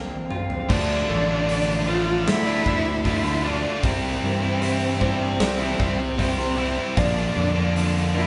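A drum fill on a big acoustic rock kit opens this euphoric, cinematic post-rock fragment, its punchy kick and medium-tuned snare ringing in a bright stone room while a dark, bowed cello carries the melody from the very start with expressive vibrato and portamento. Beneath it, a growly fuzz bass played with the fingers drives the low end, and a twangy, compressed twelve-string electric guitar and a felt-muted upright piano, intimate and mellow with audible action noise, add very quiet arpeggios. At 0.7 seconds the main section arrives, bringing two picked electric guitar riffs: one tight and distorted, the other biting and overdriven, sitting further back in the mix. The harmony moves from Bb through Dm7 and C before settling back on Bb, as crash, hi-hat and toms fill out the kit's sound. The band sounds as if playing live in one room, with moderate reverb and a slightly rounded top end, and the passage is cut from a longer piece.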